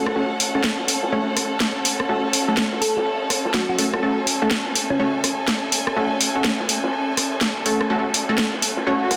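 A bold, bright orchestra-hit-like synth stab sits up front in this gritty, aggressive bass house excerpt at 124 BPM in F# minor, swung on the sixteenths and tuned to A4 = 436 Hz, with a filter sweep running through the whole passage and its own reverb and digital delay trailing each punchy hit. A rich, bowed studio string section with expressive vibrato holds a soft-attack texture alongside it. A cracking, layered garage drum kit of hi-hat, rim click and snare drives the groove, while a dark, saturated breakbeat kit sits in the background, and a round, tine-like thumb-piano-like pluck with chorus and delay adds a mellow melody from 2.8 to 5.1 seconds before an electronic swell arrives at 9.0 seconds, all bathed in a lush hall reverb and a dense, heavily limited modern master.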